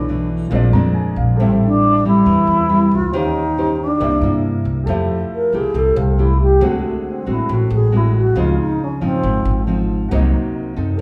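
A mellow alto flute with a wooden head carries the melody in this breezy, relaxed bossa nova excerpt, its pure, softly attacked tone shaded with vibrato, and it takes a solo from 4.9 s before falling away at 9.6 s. Underneath, a nylon-string guitar plays thumb-plucked classical-style accompaniment up front, while a grand piano sits lower in the mix with a natural tone and adds a short fill at 0.5 s. A pizzicato upright bass on steel strings gives a woody, growly foundation close to the listener. The tempo is 138 BPM in a straight 4/4, and the harmony drifts through lush extended chords such as Bm11, Eb13, Fmaj9 and D7#11. The band plays live together in one room, bathed in a wet, large studio reverb that lends the whole ensemble an airy spaciousness.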